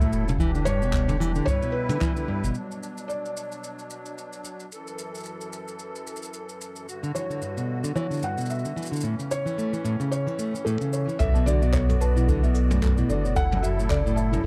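A soft, felt-muted upright piano with audible action noise carries the melody through tape echo in this playful folktronica excerpt, over shimmering musette accordion chords, a full-bodied fingerpicked jumbo acoustic guitar whose arpeggios pause at 2.6 seconds and return at 7.0, and a round sine sub bass and boomy background kick that return at 11.2 seconds alongside a buzzing, woody marimba second line with echo, while a brushed jazz kit with handclaps, shaker and toms keeps a lightly swung pulse in a dry, close 1970s-style studio sound.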